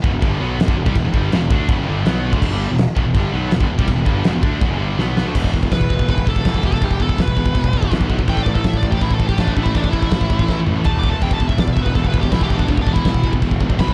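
A big rock drum kit sits up front in this heavy, relentless heavy metal excerpt, its fat snare and punchy kick rolling along at 164 BPM in a straight 4/4 in E minor, with china and crash cymbals and toms adding weight under a smooth, rolled-off top. A growly, fuzz-laden picked bass digs in low beneath three high-gain rhythm guitars: one heavy and distorted in the background, one scooped and double-tracked, and another scooped guitar kept very quiet. After a drum fill closes the opening passage at 5.3 seconds, the harmony moves from Em to E5, A5 and back to E5. A bright, distorted lead guitar enters at 5.7 seconds and solos through to the end, reaching as high as D6. A second drum fill arrives at 10.5 seconds. The whole excerpt sits in a small room ambience with a dark production.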